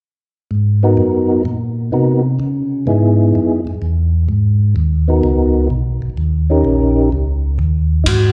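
Soul jazz organ trio in a bluesy, smoky mood, swinging in four over minor ninth chords and a closing dominant seventh, with a mellow, round tonewheel organ bass entering at 0.5 seconds through a slow rotary speaker, its dark, clean tone carrying a touch of key click. A soft, flute-like tonewheel organ takes the melody from 0.8 seconds, clean and percussive with second harmonic percussion, chorus vibrato and the same slow rotary speaker. A compact acoustic cocktail kit appears only briefly at 8.1 seconds, adding a punchy kick and dusky ride cymbal, while a recital hall reverb lends the fragment a spacious, churchlike bloom.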